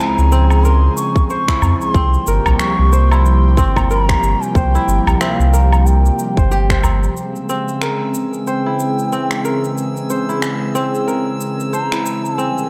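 A mellow, airy bansuri carries the melody in this warm, earthy organic downtempo excerpt at 92 BPM, its bamboo tone marked by vibrato, a crisp attack and lifted highs, with analog delay trailing behind it. Beneath it, a soft, breathy pad holds sustained chords with chorus and sidechain pumping, while a ringing, fingerpicked kora plays arpeggios roughened by vintage 12-bit sampler grit, a low-pass filter and its own analog delay. An electronic shaker, woodblock and finger snaps run throughout with a 16th-note swing, and a round, up-front sub bass with sidechain pumping enters at 0.2 seconds, joined by a tight electronic kick and a deep, very quiet udu until about 7 seconds. The harmony moves from Dbmaj7 to C7sus4, then settles on Db5 as the low end drops away and a glassy texture of drifting overtones, bathed in chorus and reverb, arrives at 7.6 seconds. A very quiet riser flickers in at the very end, and the whole recording has a dry, gritty hardware character with light reverb.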